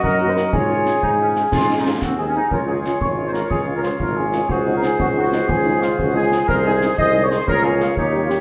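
A roomy recital-hall sound opens this rousing, proud excerpt of a military-style wind band march in 6/8 at 121 BPM, where a dark, up-front trumpet section carries the melody over a clear, soft-attacked woodwind second line, a smooth-topped tuba bass, close, dry concert bass and snare drums with bright cymbals, and a very quiet French horn accompaniment entering at 0.2 seconds.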